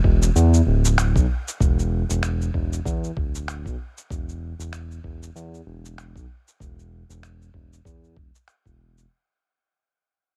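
A loping 4/4 groove at 96 BPM, with a 57% swing on the sixteenths, drives this short organic downtempo excerpt, cut from a longer piece and fading out across its full 9.1 seconds. An electronic kick drum, sampler-style and compressed, anchors the beat from the start until 8.8 seconds with a gritty, thumpy, tape-warm punch. An electronic shaker and finger snaps join at 0.2 seconds, sitting lower in the mix with the same sampled, compressed, natural-pitch character. Up front, a smooth synth bass blending sawtooth, square and triangle waves roams between D1 and E2, its detuned, nasal tone warm and mellow, with a fast attack, sustained notes and vibrato. Little reverb keeps the sound close and dry, leaving a mood that feels warm and mystical.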